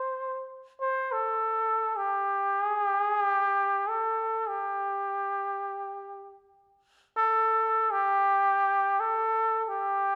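A solo trombone with a straight mute opens and carries this short Mongolian folk passage, its nasal, brilliant tone sitting up front and played in a classical style with light vibrato between G4 and C5. The free-time phrasing feels proud and galloping, with tuning set to A4 = 444 Hz. A wet recital-hall reverb of about 1.4 seconds surrounds the horn through the 10.2-second fragment, which is cut from a longer piece.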